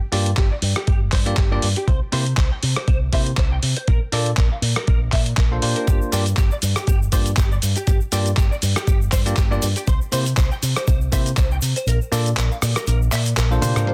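Sleek and sensual, this nu-disco cut moves at 120 BPM in G dorian with a light swing on the sixteenths, cycling through Gm7, C7 and Bbmaj7. A round, dark picked bass with an envelope filter sits up front beside a thumpy, gritty electronic kick. A dusty soul sampler-style kit adds handclaps, hi-hat, rim click, shaker and toms under low-pass filtering, while a bell-like tine electric piano with tape echo comps and a bright, scooped, direct clean guitar riff carries chorus, 12-bit grit and echo. An egg shaker murmurs in the background from 5.9 s, the kick drops out at 11.9 s ahead of a drum fill, and a single ringing vibraphone note lands at 13.9 s, all in a dry, dense, heavily limited mix.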